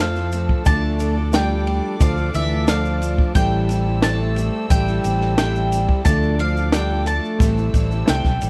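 A dry, close studio sound in a 1970s style frames this short fragment of indie folk in A minor, moving at 89 BPM in a straight 4/4 with a bittersweet, yearning mood. A bright, double-strung bowl-back mandolin carries the melody, while a mellow, smooth-topped French horn sings a classical-style second line beneath it until 8.4 seconds. The fingered electric bass sits up front with a round, amped, punchy tone, and a compact cocktail drum kit enters at 0.2 seconds with a punchy kick, a high-tuned snare and dark ride cymbal, joined by a grainy tube shaker in the background. Filling out the middle are a picked parlour acoustic guitar with fresh strings, a worn, woody, slightly detuned upright piano kept very quiet, and an intimate chamber string section holding soft-attack sul tasto chords with light vibrato. The harmony drifts from Fmaj7 through Dm to Am7, then returns through Dm to Am7, giving the arrangement a gently building, wistful pull.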